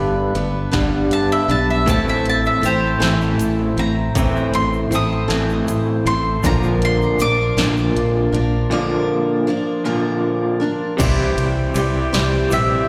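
Heard as a live gig through the venue's PA, this excerpt carries light reverb and the airy resonance of a recital hall. It is nostalgic, open-road folk rock with a heartland rock lilt, in a straight 6/8 at 52 BPM counted in dotted quarters, set in C mixolydian. A round, double-strung mandolin carries the melody as a solo up front, colored by slapback echo and digital delay, with a break from 8.7 s until the harmony arrives on C at 11.0 s. Beneath it, a full-bodied dreadnought acoustic guitar with fresh strings is picked up front with slapback echo. An electric guitar through a small old amp plays a slightly broken-up, lo-fi, compressed riff with tremolo and slapback, while a fat, clean tonewheel organ holds sustained chords in the background through a slow rotary speaker. A direct, fingered electric bass sits up front, a punchy analog drum machine with tape coloring and a small-room re-recorded character comes in just after the start on kick, snare, hi-hat, ride and crash, and a grainy, bright egg shaker joins close and dry in the background at 1.9 s as the chords move from G through Am and Bb.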